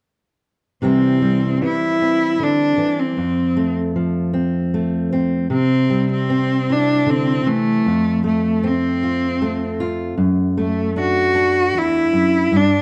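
A fingerpicked steel-string acoustic guitar opens at 0.8 seconds, its dark tone setting an intimate, heartfelt folk mood in a straight 3/4 at 77 BPM in C major. A single bowed cello enters almost at once at 0.9 seconds to carry the melody, its rich, focused voice marked by vibrato and a smooth top. Both instruments sit up front, the guitar providing accompaniment over a progression that moves from C to F before a second section begins at 5.5 seconds, returning to C and F and arriving on D/F#. A moderate recital-hall reverb, with a 1.4-second decay, surrounds the pair in a warm, shadowed production. The recording is a fragment cut from a longer piece.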